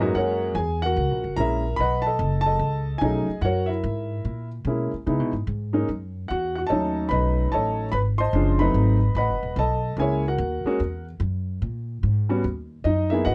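Warm and sophisticated, this swinging jazz passage pairs an intimate concert grand piano carrying the melody, its deep low end and audible action noise close up front, with a woody pizzicato upright bass on steel strings, both playing throughout the 13.3 seconds. The harmony moves through rich chords such as F#9, B9, C#m7 and Cdim7 before settling on D#m. The production is dark and dry, with little reverb.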